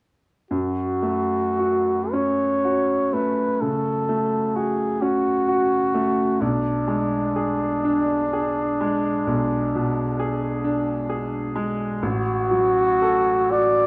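In a slow, rubato 12/8 at around 35-45 BPM in dotted quarters, this melancholic, elegiac romantic classical duo in F# minor unfolds as a fragment cut from a longer piece, with both parts entering together at 0.5 seconds. A dark, smooth-topped trumpet with light vibrato carries the solo melody up front in classical style, while a bright, brilliant grand piano with a vintage character and long sustain accompanies beneath it, moving from F#m to G#dim/B at 6.4 seconds and settling on F#m/A at 12.0 seconds. Light reverb and a dusky, warm production frame the pair.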